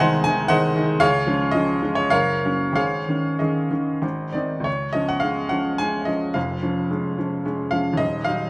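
Warm and passionate, this short cut from a longer romantic character piece for solo piano moves in a rubato 3/4 at 91-121 BPM in Db major, tuned to A4 = 444 Hz, with a clear, woody upright piano sitting intimately up front (its action noise audible) and ranging from Eb1 to Bb5 through a wet stone-room reverb, as harmonies such as Ab7/C, Gb and Absus4 resolve to Ab before the second section opens on Db at 4.7 seconds and settles onto Db/F at 6.4 seconds.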